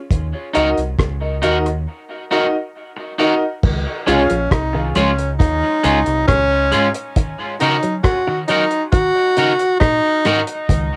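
Hypnotic and heavy, this slow dub reggae excerpt rides a deep, round fingered bass and a cloth-damped, thuddy drum kit with dark cymbals and a tight kick, while a twangy guitar at the edge of break-up drifts through dub echo, a brilliant concert grand adds echoing stabs until 4.3 seconds, a clean envelope-filtered guitar murmurs phased arpeggios in the background, and a clear tenor saxophone with light vibrato carries an up-front second line, all in a lightly reverberant cassette home recording.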